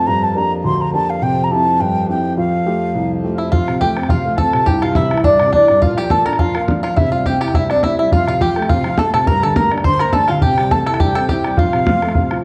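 An airy, wooden baroque flute carries the tongued, vibrato-laced melody up front over a breathing, reedy pedal harmonium drone and a dark, woody upright piano with audible action noise, opening this bright, rollicking Celtic reel in F major at 208 BPM with a light swing; the harmonium drops out as a twangy, fingerpicked banjo and a mellow, full accordion enter together at 3.4 s on a quieter second line, joined at 3.5 s by a tight, damped, vintage-toned bodhran, all set in a moderate recital-hall reverb with a dark, warm production.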